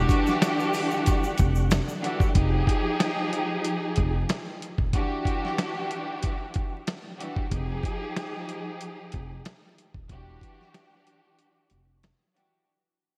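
A dark, bowed string section sits up front in this moody, tough boom-bap hip-hop excerpt, its lush, expressive ensemble sound carrying vibrato and a smooth top across the whole 12.7 seconds. Underneath, a gritty, compressed sampler-style drum kit with a thumpy kick and medium-tuned snare rides a lightly swung 93 BPM groove in 4/4, joined by a woody pizzicato upright bass on gut strings. For the opening stretch, a clean tonewheel organ with slow rotary speaker and chorus vibrato holds full sustained chords in the background alongside a grainy tube shaker, both dropping out at 2.3 seconds. The harmony shifts between Em9 and Fm9, and from 2.4 seconds the music fades out, with breaks at 4.9 and 11.4 seconds. A lush hall reverb, bright 1980s-style digital production and a layer of vinyl crackle give the whole piece its moody character.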